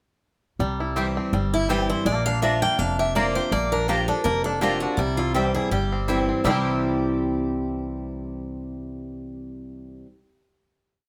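A bright, full-bodied jumbo acoustic guitar sits up front with the melody, a fiddle tune in running eighth notes that enters at 1.5 seconds and drives this short, lively bluegrass piece at 164 BPM in 4/4, swung lightly and set in C mixolydian, tuned slightly low to A4 = 438 Hz. Beneath it, a second picked concert guitar with old, woody-sounding strings plays alternating bass and strum, while a twangy, percussive fingerpicked banjo runs three-finger rolls. An upright bass, growly and thumpy, keeps a two-beat root-and-fifth pulse up front. A picked mandolin with double strings chops on the off-beats. The harmony moves from C to Bb and back to C, and after a single section the band lands on a final chord from 6.4 seconds, all in a moderate studio reverb.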